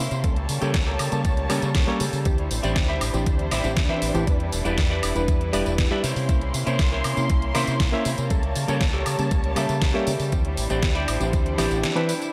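A straight 4/4 nu-disco groove at 119 BPM is driven by a knocking, overdriven electronic kick and a layered pop kit with a deep snare, hi-hat, tambourine and woodblock, under a round, punchy fingered bass shaped by an envelope filter. A barky, reedy electric piano with light overdrive, sidechain pumping and diffuse delay carries the accompaniment, while a dark, cleanly picked electric guitar plays a riff through subtle chorus and muted, veiled violins hold lush bowed chords with vibrato. The mood is sensual and cosmic over chords such as A7b9/C#, D9sus4, Em7 and C7b9, and a dreamy hall reverb soaks this 12-second excerpt cut from a longer piece.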